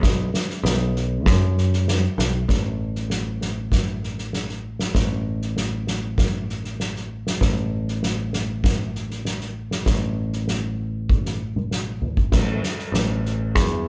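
A growly, up-front picked electric bass and a roomy soft-mallet drum kit with dark cymbals, a fat snare and a punchy kick open together on this soaring, euphoric post-rock fragment in straight 4/4, played live by a band in one room with light reverb, and a drum fill from 11.1 to 12.3 s leads into the closing stretch.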